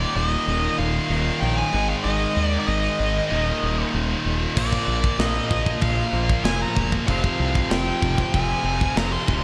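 In a straight 4/4 metal groove, this dark, epic piece sets a nasal, overdriven lead guitar with a parked wah and digital delay carrying the melody over two heavy, distorted high-gain guitars and a very quiet scooped one playing the riff, with a growling, punchy fingered bass up front, and a tight drum kit with bright china and crash cymbals joins at 4.6 s, the mix sitting in a lush hall reverb for a big arena sound.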